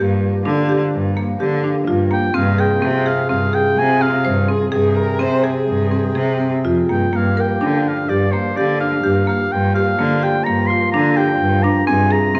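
A reedy, breathing harmonium holds chords beneath bright, woody hard-mallet marimba arpeggios and a rich, bowed cello bass line from the start of this hypnotic, restless chamber fragment in an uneven 5/4, before a clear oboe carries the classical-style melody up front from 2.1 seconds and a dark, distant viola adds a brief expressive second line with portamento between 4.5 and 6.4 seconds, all set in a wet recital hall with a dark, warm production.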